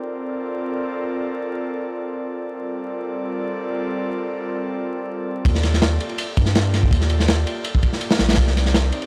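A dry, gritty hardware recording with vinyl crackle gives this short cut from a longer drum and bass and jungle piece an atmospheric yet frenetic character. An airy, breathy pad with a chorus effect sits up front and holds sustained chords throughout, blending detuned sawtooth and triangle tones with a soft noise layer, a slow attack and a long release as it moves from Bbmaj7 to Gm11. At 5.5 seconds the drop arrives, and a crunchy acoustic breakbeat kit enters with a tight kick, a medium-tuned snare and a dark ride cymbal, its rolled-off top and mid-forward tone placing it close to the listener. A deep, thick, saturated sine sub bass with a fast attack joins at the same moment, holding long notes beneath Ebmaj9#11 and then Cm7 before it stops at 8.9 seconds. The close, dry room keeps the drums and pad immediate and gives the section its raw, urgent edge.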